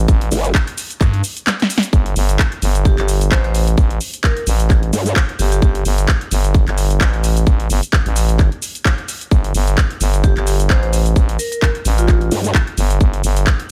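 A thick, growling FM bass with tube saturation and sidechain pumping drives this bouncy, swaggering bass house excerpt, set over a tight, up-front electronic kick and a swung house kit of handclaps, hi-hat, shaker and punchy snare. Short, aggressive bursts of a wobbling, chorused growl bass cut in near 0.3, 4.9 and 12.3 seconds, and a dark, ringing vibraphone with tape echo drifts in the background from 2.9 seconds, all in a roomy digital ambience.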